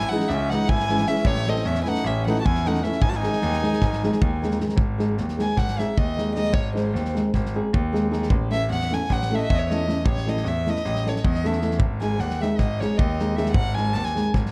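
Restless and fiery, this Balkan wedding-band excerpt drives along in 9/8 at 307 BPM in G# phrygian dominant, with a loose, small-room drum kit of tight kick and medium-tuned snare under a brilliant, up-front concert grand piano carrying a deep bass line. A thumb-plucked flamenco guitar accompanies, while a dark, intimate violin, played sul tasto with an airy bow and light vibrato through analog delay, leads the melody, and a soft-edged classical trumpet adds a second line until 4.4 s. From 4.8 s the violin takes a solo over chords moving between G# and A, in a shadowy production with light reverb.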